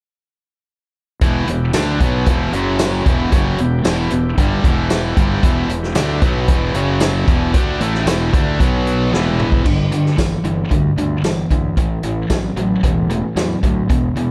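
Brooding and gritty, this classic rock passage in E dorian moves at 114 BPM in a straight 4/4. At 1.2 seconds the whole band comes in together. Two picked electric guitars play low riffs: one biting and overdriven, the other tight, bright and distorted. Under them, a fingered electric bass with fuzz and overdrive sounds warm, direct and amped. The vintage acoustic drum kit sits up front yet feels roomy and distant, with a punchy kick, a medium-tuned snare, dark cymbals, hi-hat, toms and tambourine, all with a rolled-off top. Very quietly beneath it all, an overdriven tonewheel organ holds full chords with key click and a slow rotary speaker. A drum fill at 9.1 seconds leads into a new section, and the organ drops out at 9.6 seconds, while the harmony moves from Em and F#5 toward G5 and A5 under light studio reverb.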